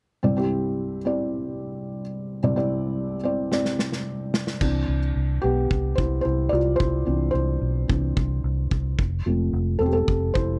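A straight 4/4 pulse at 110 BPM carries this hopeful, uplifting piano-driven pop excerpt in C major, opening on a soft, intimate felt-muted upright piano over a Cadd9 chord, sitting up front with a mellow, thick-felt vintage tone. A loose indie drum kit arrives with a fill at 3.5 seconds, its punchy kick, medium-tuned snare and dark crash cymbal set in a small, pumping room. At 4.6 seconds the piano takes a solo over a round, foam-muted fingered electric bass with an amped, punchy character, all under light reverb until the harmony moves to F near the close.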